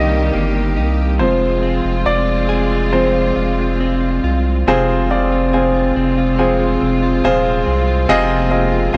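A dry, close 1970s-style studio sound with a small room's reverb frames this heartbroken, emotional pop ballad at 70 BPM in a straight 4/4, cut from a longer piece and moving from Cm7 to Fm. A warm, polished baby grand piano sits up front, taking a solo from 0.0 to 4.7 s, while a deep, thick, saturated sub bass holds sustained sine tones close beneath it. Lush bowed strings with vibrato sustain smooth, distant chords, and a clean, compressed electric guitar picks arpeggios, recorded direct, in the background.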